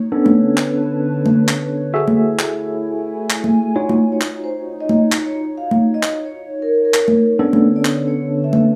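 UK garage in a skippy, late-night two-step groove at 132 BPM, with a swung 16th-note shuffle and chords moving from Bm9 through Gbm9 and Ebm9 before returning to Bm9. A worn, slightly out-of-tune tine electric piano plays up-front stabs through a combo amp with medium tremolo, digital delay and a filter sweep, over a warbling, nostalgic lo-fi pad with chorus and a slow, sustained bloom. Layered electronic congas and handclaps sit up front, and a mellow, airy vibraphone played with soft mallets enters at 3.8 seconds with a ringing melody trailed by dub echo, all in a small, moderately reverberant room.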